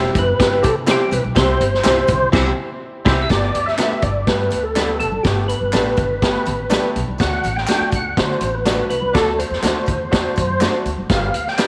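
A bright grand piano, clean semi-hollow electric guitar stabs and woody pizzicato upright bass open this joyful, uplifting fragment of uptempo 1960s-style soul at 123 BPM in G major, joined at once by a punchy vintage drum kit with dark cymbals, a distant, roomy saxophone section that plays until 3.2 seconds and returns briefly at 9.1 seconds, and an up-front, mellow tonewheel organ carrying the percussive melody through chorus vibrato and a slow rotary speaker, while very quiet soft-handed congas, background tambourine with handclaps and full-band accents sit inside a moderate echo-chamber reverb.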